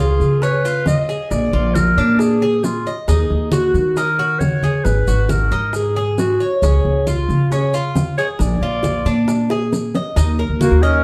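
Sultry and warm, this excerpt of Cuban son and guajira moves at 136 BPM in a straight 4/4 in Eb minor, led up front by a raspy, growling clarinet melody with scooped notes and light vibrato over a bright, metallic tres picking arpeggios and a woody, thumpy pizzicato upright bass. Tight, high-tuned bongos and thick-skinned low congas sit in the background alongside grainy maracas, with a drum fill from 9.5 to 10.2 seconds before a close-miked trumpet slips in on a second line at 10.6 seconds. The sound is heard from further back in a wet studio reverb and carries lossy compression artefacts.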